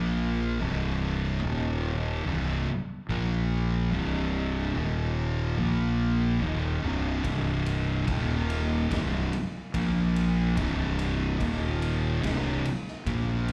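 Two thick, picked fuzz guitars and a growly, overdriven fingered bass open this heavy, hypnotic stoner and doom metal excerpt together, grinding through a slow riff built on power chords in straight 4/4. At 7.2 seconds a raw garage drum kit joins with a punchy kick, snare and ride, its gritty, saturated sound rolled off at the top and set in a stone-room ambience. The whole performance comes across like a live gig heard through a club PA, soaked in venue reverb, with one guitar and the bass pushed up front.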